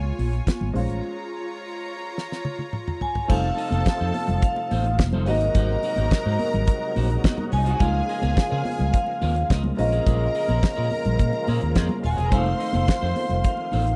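A joyful, celebratory disco groove at 106 BPM opens with a clear, biting string section, a dark, very quiet baby grand piano, a growly fingered electric bass, soft-handed high-tuned congas and a damped 70s drum kit with a fat snare and tight kick, moving through a filter sweep, a break and a drum fill. A ringing, metallic vibraphone enters at 3.0 seconds, carrying the melody through a low-pass filter. At 3.3 seconds the full band settles in over chords moving from F7 to Ab7 to Db6, with a clean electric guitar with spring reverb and a gritty overdriven tonewheel organ on slow rotary speaker holding sustained chords in the background. The sound is dry and close, in a 1970s studio style, with the drums and bass up front, and the passage is cut from a longer piece.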